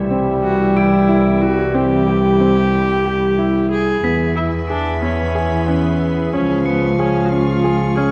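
Set in 7/8 with a straight feel at 183 BPM counted in eighths, this short cut from a longer contemporary chamber piece feels shimmering and playful. A bowed cello, dark and woody with vibrato, sits up front in the bass while a soft, organ-like additive pad holds pure, sine-toned unison chords with a slow attack, long release, ensemble chorus and its own built-in reverb. Over them a clear baby grand piano with a worn, open character and long sustain runs arpeggios, and a mellow French horn with a soft attack and smooth top carries a classical-style second line. The viola enters with the melody at 0.4 seconds, its reedy, gut-string tone played in period style, and bell-like crotales struck with hard rubber mallets ring high and soft in the background from 0.8 seconds. The harmony moves from C to E at 4.0 seconds and on to C#, all placed in a moderate concert hall with a dark, warm production.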